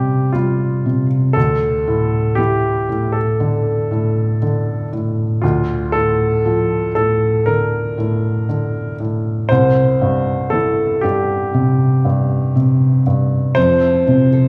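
In a straight 4/4 feel, this tender, hopeful pop ballad excerpt sets a clear, polished concert grand carrying the melody, with audible action noise and long sustain, over a mellow, felt-muted upright piano whose short-sustained accompaniment sits up front, while a full-bodied, fingerpicked nylon-string guitar slips in with arpeggios only at 13.6 seconds, all bathed in the reverb of a recital hall.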